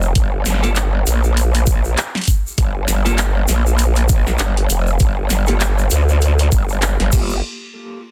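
Gritty and funky, this glitch hop excerpt rides a swung 16th-note groove over a single G minor chord, led by an up-front growl bass that wobbles and snarls through formant filtering, saturation and overdrive. A knocking electronic kick sits forward in the mix alongside a layered kit of cracking snare, bright hi-hats, handclaps and crash cymbal, all carrying a small-room re-recorded character, while a grainy egg shaker ticks in the background. From 0.6 s, dark, clean picked electric guitar stabs pump against the sidechain and trail dub echoes under a filter sweep, all within a dense, heavily limited modern master.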